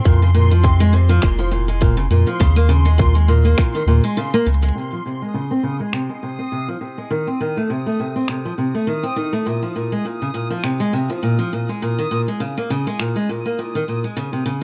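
A picked steel-string acoustic guitar leads this playful, delicate folktronica excerpt with up-front arpeggios through low-pass filtering and tape echo, and a filter sweep shapes it from 4.8 seconds onward over suspended and seventh chords. Beneath it, a deep, round sine sub bass and a tight, overdriven electronic kick drive the opening, the kick dropping away near 3.7 seconds and the bass near 4.7 seconds. Crisp, overdriven finger snaps, hi-hat and shaker from an organic electronic kit continue until 13.1 seconds, while a reversed, granular, detuned swelling texture glimmers high above in its own reverb, all within a dry, close 1970s-style studio sound.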